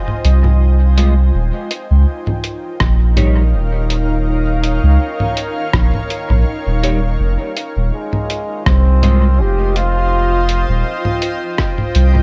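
Ambient dub excerpt with a deep, hazy mood, where a cloudy, evolving granular pad and muffled, pitched-down sampler-style congas, hi-hat and rim click with dub echo sit over an up-front, round sub bass, while a dark semi-hollow guitar adds chorused, echoing stabs from 1.0 s, an electronic kick enters in the background at 2.8 s, and a clear, distant trombone carries a dub-echoed melody from 7.9 s.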